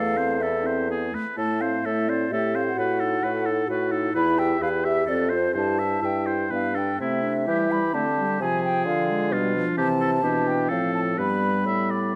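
An airy silver concert flute with soft-attack vibrato sings the melody over a smooth-topped oboe second line, a present, mellow French horn and a gently attacked clarinet in accompaniment, and an up-front bassoon bass with light vibrato, in this restless, dramatic classical-period wind quintet movement at a quick, rubato 128 BPM in 3/4 that turns from A minor to C major at 4.1 seconds, captured by close, detailed microphones in a moderate concert-hall reverb.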